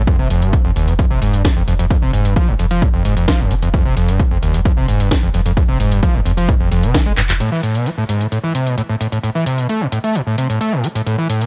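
A straight 4/4 pulse drives this relentless, industrial peak-time techno fragment, where a punchy, up-front electronic kick and a layered kit of cracking snare, handclaps and metallic, pumping hi-hats back a screaming, squelchy sawtooth acid riff with resonant filter sweeps, distortion, chorus and delay over a round, sine-toned sub bass; the kick drops out at 7.0 seconds, and after a drum fill at 7.2 seconds the sub bass falls away at 7.4 seconds, leaving the acid line and kit in a dry, gritty, cassette-tinged mix.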